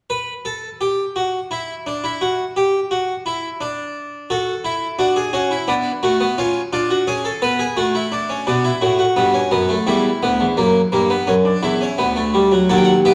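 A lone harpsichord, plucked and brilliant with a full, up-front Italian-style voice from its three sets of strings, opens this serious, solemn baroque-style four-part fugue in 3/4, cut from a longer piece. Its lines range from D2 to G5 and move through minor-key harmonies such as F#m, Bm7, C#7, G6 and F#7 before settling on Bm/D near 12.0 seconds. The sound sits in a reverberant recital hall and carries the worn, warbling pitch drift of an old cassette tape.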